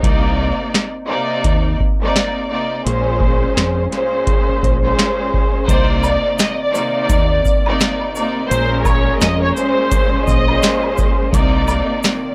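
Dark and moody, this boom-bap hip-hop cut moves at 85 BPM in 4/4 with a swung sixteenth-note feel, built on chords shifting between Cm9 and Bbm9. A booming analog drum machine sits up front with a deep kick, crisp snare, metallic hats and shaker, its sound re-recorded in a small room. Beneath it, a deep dub fingered electric bass runs round and punchy through tube saturation, while a rich symphonic string section carries the accompaniment with lush, bowed vibrato and a filtered, cassette-tape coloring. At 5.7 seconds a warm studio violin section enters with a reedy, gut-string melody touched by tape echo, joined by a very quiet string section holding expressive sustained chords with portamento and a background layer of tube shaker, woodblock and group handclap. The whole has a dry, gritty hardware character with light reverb, and it is cut from a longer piece.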